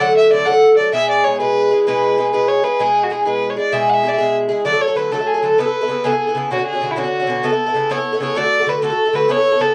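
Rolling along in a straight 12/8 slide, this cheerful, rollicking Celtic folk fragment, cut from a longer piece, sets one bowed fiddle with a rich, smooth tone, light vibrato and a cassette-tape tint over the picked, metallic double strings of an Irish bouzouki, both up front, moving from D and E to Aadd9 and Bmadd9 when the second section arrives at 4.7 seconds, in a home cassette recording with a short, wet booth ambience.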